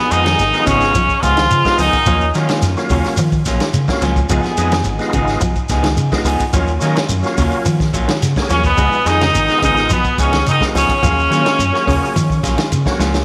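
Joyful, driving afrobeat at 107 BPM in Db mixolydian, cut from a longer piece, where a buzzy, metal-muted trombone carries the melody up front in bursts at 0.0 and 8.5 seconds, shadowed by a very quiet raspy tenor saxophone and a clear trombone section, over a bright, clean semi-hollow guitar playing arpeggios, slightly broken-up guitar stabs with spring reverb, a gritty overdriven tonewheel organ through a fast rotary speaker, a round, dark dub bass with transformer saturation, a punchy vintage drum kit, and a grainy shekere, all moving between Db9 and Ebm9 in a small room with echo-chamber reverb until a drum fill at 13.0 seconds.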